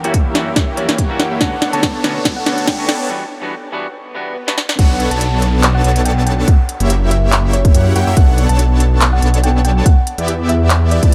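This emotional, lush future bass excerpt in B minor at 142 BPM, with a half-time, lightly swung feel, opens on a build-up where a twangy clean electric guitar with gritty 12-bit sampler texture, tape echo and sidechain pumping, a very quiet bowed string section, huge detuned supersaw chords under a low-pass filter sweep, a crisp trap kit with handclaps and crash, a hard-clipped kick, and a background riser gather over chords moving from F#7b9 to Bm9 and Em9, while a round, tine-like FM pluck melody with chorus and tape echo enters at 0.4 s, before a brief break and swell give way at 4.8 s to a drop anchored by a thick, saturated, chorused detuned saw bass.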